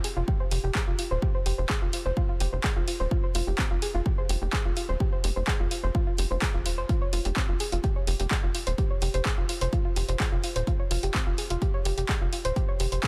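Soft, round pluck arpeggios with chorus, tape echo and sidechain pumping open this dark, driving melodic techno excerpt alongside an overdriven analog drum machine of handclaps and pumping hi-hats heard in a large room, joined at 0.2 seconds by a tight, wave-folded sawtooth sequencer bass with its own pumping and at 0.3 seconds by a heavy, layered, tape-tinged electronic kick sitting up front, all set in a digital ambience.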